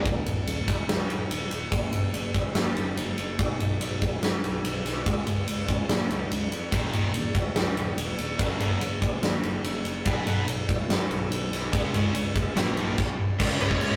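Powerful and energetic, this hard rock excerpt in straight 4/4 rides on a huge arena drum kit with a fat snare and punchy kick up front and a dark, round fuzz bass throughout, as two high-gain distorted guitars return with a bright picked power-chord riff from 6.7 s, a third double-tracked guitar creeps in very quietly near the end alongside a barely audible mellow rotary organ, and a nasal parked-wah lead with a faint octave-fuzz second line surfaces at 13.6 s, all in a rough rehearsal-room sound with light reverb and tube saturation.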